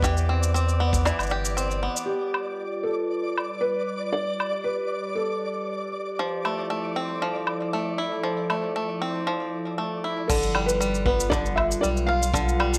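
Opening on a soft, muted upright piano melody with digital delay and plate reverb, twangy fingerpicked banjo arpeggios, a round sub bass, a punchy brushed kick, an overdriven organic electronic kit of woody snare, shaker, woodblock and crash, and a flickering grainy texture, this wistful, autumnal folktronica excerpt at 117 BPM in 4/4 adds a warbly, detuned tape-like pad from 2.6 s. It then thins to piano, pad, texture and kit, with the banjo returning at 6.2 s as the piano drops out. Piano, bass and kick come back at 10.3 s over chords moving from Cmaj7 through G7 and Fmaj7.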